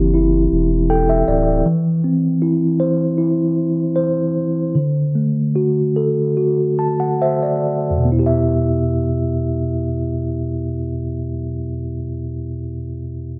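In straight 4/4 at 68-79 BPM that slows from 1.7 to 8.1 seconds, this melancholic, heartbroken pop excerpt in E minor sets a mellow, clean tine electric piano up front, with fills at 0.5 and 6.4 seconds, over a deep, thick, saturated sine sub bass that sounds only until 1.6 seconds, moving through C6, C/E and D7 to settle on Em at 8.1 seconds in light digital reverb.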